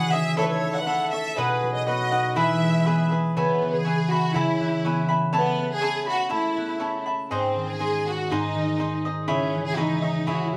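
Mariachi-flavored Mexican folk at 121 BPM in 2/4, proud and festive, moves from E major into C# minor at 3.4 s, with a lush, vibrato-rich violin section singing the melody up front over crisp picked cavaquinho and a ringing fingerpicked concert harp in arpeggios, while a mellow, vintage-toned trumpet adds a second line until 3.3 s, all captured as a band playing live in a moderate studio room in this short excerpt from a longer piece.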